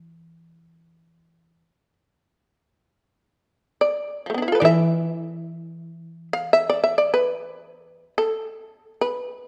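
A calm, austere passage of Japanese traditional music in free time, cut from a longer piece, opens with a bright, buzzing shamisen carrying the melody with powerful, percussive plectrum-plucked attack alongside a mellow, woody koto accompaniment played with fingerpicks, both up front in a moderate recital hall reverb until the koto falls away at 8.0 seconds and the shamisen continues alone to 9.5 seconds.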